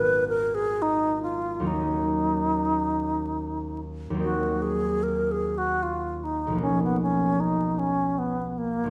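Classical impressionist duo in Eb minor, a mysterious and wistful fragment in a rubato 3/4 around 70-78 BPM, where an airy, bright alto flute carries the melody with vibrato, soft attacks and expressive phrasing, sitting up front beside the harp. The concert harp provides fingerpicked, ringing accompaniment with an acoustic warmth, drifting through Abm6 and Ebm7 before a new passage at 4.2 seconds moves to Ebm6 and Bmaj7#11. A wet recital hall reverb surrounds the pair, and vinyl crackle adds an aged patina to this excerpt cut from a longer piece.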